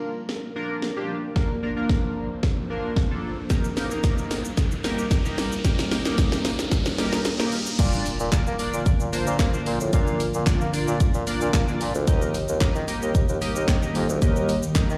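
Heard through a venue's PA with recital-hall reverb, this euphoric, summery dance-pop excerpt at 112 BPM in Bb major rolls along in a straight 4/4, moving between Bb and Eb. A glossy, retro polysynth built from pulse, sawtooth and triangle waves with chorus and slapback echo carries the accompaniment, while an ethereal, airy pad of detuned unison voices holds sustained chords, shimmering with ensemble chorus, tremolo and its own reverb, both breathing with sidechain pumping. A punchy, tape-tinged house drum kit sits up front from 0.3 seconds with crash, handclaps, hi-hat, kick, cracking snare and shaker, joined at 3.5 seconds by a grainy, very quiet egg shaker heard close and dry. The opening build-up features a drum fill and a rising electronic riser, leading into the drop at 7.8 seconds, where an impact lands. At that point a clear bassoon enters as the bass, played soft-attacked and solo in a classical style with light vibrato, breathing with sidechain pumping up front in the mix.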